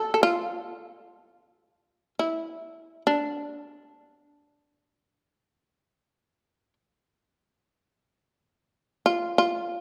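A lone shamisen, plectrum-plucked and up front, sounds bright and buzzing with a powerful percussive bite between D4 and A4, its fretless voice held in a moderate recital-hall reverb in this still, solitary excerpt of Japanese traditional chamber music.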